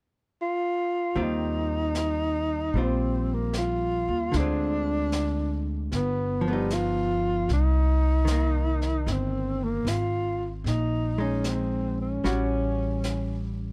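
Tender and late-night in mood, this jazz ballad excerpt moves at an unhurried 76 BPM in 4/4 with a lilting swing on the eighth notes, centred in Eb major. A breathy tenor saxophone opens alone at 0.4 seconds, carrying the melody up front with a whispered subtone, soft attacks, scooped notes and gentle vibrato that give it an intimate, smooth-topped voice. At 1.2 seconds the rhythm section enters together: a woody, thumpy upright bass with gut strings sits forward in the mix, a clean, compressed hollow-body archtop guitar supplies dark picked accompaniment, and a brush kit adds soft snare and hi-hat colour well in the background. The harmony drifts from Eb69 through Dm7b5, G7b13 and Cm7 to Bb7sus4, landing on an unexpected A6 near the close. With little reverb and a dark, warm production, the sound feels close and private, like a small room after hours.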